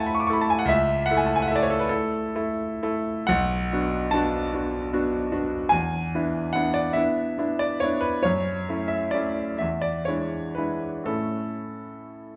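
Swaying in a rubato 6/8 at roughly 39-51 beats per minute, counted in dotted quarters, this brief excerpt of a romantic nocturne for solo piano moves with a tender, serene unhurriedness. The grand piano carries the whole passage alone, from 0.0 to 12.4 seconds, ranging from B1 up to D6 in A major with the instrument tuned to A4 = 439 Hz. Its tone is clear, smooth and vintage, with a short sustain that keeps each note distinct, and it sits up front in the mix. The harmony unfolds gently from A through A/C#, Bm7, E7 and F#m7, then returns via E7 to rest on A. A moderate recital hall reverb of 1.3 seconds surrounds the instrument, and the overall production leans dark and warm.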